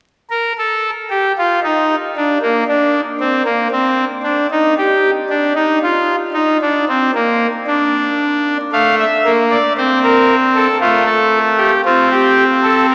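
A pipe organ's trumpet stop opens alone at 0.3 s, brassy and up front with a crisp chiff, in a lively, elegant baroque-style three-part classical fugue at 57 BPM in 4/4 that settles onto an F/A chord at 8.7 s, its lines ringing through a long cathedral reverb under a vinyl crackle and a dulled top end until this excerpt cuts off at 12.9 s.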